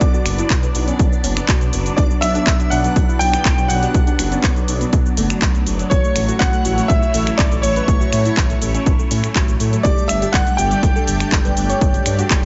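Dreamy yet driving, this progressive house excerpt moves at 122 BPM in B minor, passing through Bm, A6 and Gsus2 over about twelve seconds. A bright, brilliant baby grand piano carries the melody with long sustain and tape echo, shadowed by an airy lead with vibrato and portamento that sits mellow in the background, pumping to the sidechain under chorus and tape echo. Beneath them, a lush, thick unison pad holds sustained chords through chorus and phaser, while a soft, round pluck spins gentle arpeggios with a touch of chorus and tape echo. A dark detuned saw bass rumbles deep with a beating, sustained tone, also breathing with sidechain pumping. The punchy electronic kick sits up front with a tape-warm character, and a house kit of finger snaps, handclaps, hi-hat and shaker adds layered texture with warm hats, both in small room ambience, while a barely audible downlifter slips by in the first 2.0 seconds under light reverb.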